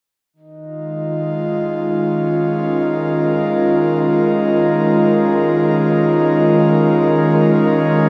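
A slow, straight 4/4 pulse barely surfaces in this weightless, luminous ambient excerpt, where an airy, breathy pad with chorus sits up front holding sustained chords and fading in from 0.3 s to 8.1 s. Alongside it, a quieter glass harmonica adds a pure, ethereal texture, fading in over the same span. The whole sound is steeped in a huge, wet reverb.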